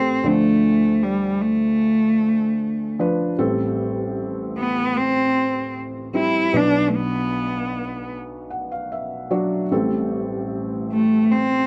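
A straight 4/4 pulse at 76 BPM carries this reflective, melancholic acoustic folk-pop ballad in A minor, where a clear, focused bowed cello with vibrato sings the melody up front over a soft, felt-muted upright piano that plays mellow, intimate accompaniment through Dm7, Am7 and Bm chords, heard in a dry, close 1970s-style studio sound with small room ambience in this short excerpt from a longer piece.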